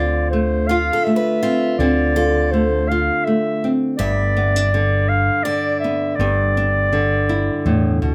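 A warm, classical-style clarinet carries the solo from the opening moment, sitting up front between C5 and F5 as it spins a hopeful, nostalgic line over this acoustic folk-pop ballad at 82 BPM in an unhurried 3/4. A small-sounding, fingerpicked nylon-string guitar shares the foreground as it supplies the accompaniment, while a round, dark fretless electric bass, amped and given an ensemble chorus, anchors the low end throughout. At 0.7 seconds a picked steel-string acoustic guitar enters with bright arpeggios, its fresh strings and occasional finger squeak set back in a concert-like space before it drops out at 6.2 seconds. The harmony moves from Dm7 to G6, and a light reverb gives this short piece, cut from a longer work, a gentle sense of air.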